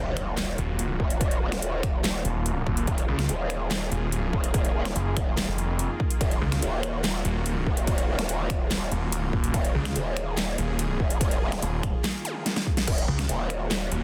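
A dense, heavily limited modern master with little reverb carries this menacing, aggressive half-time wobble dubstep, a continuous drop cut from a longer piece. Two up-front basses dominate: a chorused, saturated growl bass with a bright, formant-filtered wobble, and a snarling, distorted saw bass with a moving notch. A punchy, layered electronic kick with overdrive enters at 1.0 seconds beside a drum kit of huge snare, metallic hats, snaps, claps, and crash and ride cymbals, while a lush, detuned supersaw pad of sustained chords adds gritty 12-bit sampler texture and sidechain pumping in the background, with an impact and zap at the start and a drum fill at 12.5 seconds.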